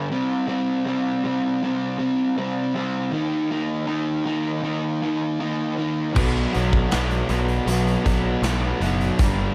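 A straight 4/4 pulse at 79 BPM drives this dark, angsty quiet-loud alternative rock excerpt, where a raw, overdriven garage guitar plays its riff up front alone over C5 and D#5 chords until about 6.1 seconds, when a thick fuzz guitar and a double-tracked, compressed fuzz guitar join in the background, a growly, direct picked electric bass comes up front, and a big acoustic rock kit with a medium-tuned snare, punchy kick, bright cymbals and crashes arrives on a Bm chord, in a largely dry mix.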